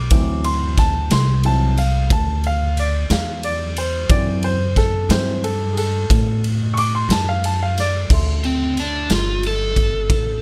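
A baby grand piano takes a solo through the opening 8.1 seconds of this swaggering slow blues, its open, long-sustaining tone ringing over a D7 chord in D mixolydian. Beneath it, a pizzicato upright bass on gut strings gives a woody, dark, thumpy low end, while a garage drum kit with a punchy kick, a medium-tuned snare, ride and crash cymbals sounds saturated and gritty inside a bright, pumping stone room. The groove moves at 60 BPM in 12/8 with a straight feel, and the piece is cut from a longer performance. At 8.1 seconds the harmony shifts to a bare D7 with its third omitted, and at 8.5 seconds an overdriven electric slide guitar, fingered and warm, enters with the melody. Every part sits up front in a dry mix with little reverb, giving the recording a close, raw presence.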